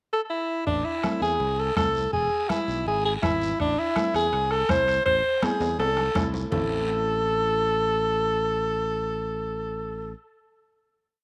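A clear, up-front alto saxophone with vibrato and slapback echo carries a motif-based, pop-style melody through this short, driving and fiery cumbia, soon joined by a growly, bright fingered electric bass playing a cumbia figure. In the background, a dark, boxy flamenco guitar thumb-plucks triad chords with audible finger squeak, while a vintage, band-limited bombo, thin-skinned congas and a raspy guiro keep the groove, with very quiet, ringing metal-shell timbales entering at 3.6 seconds. After a drum fill, the percussion stops at 6.6 seconds, leaving saxophone, bass and guitar on the final chord in a moderate spring reverb.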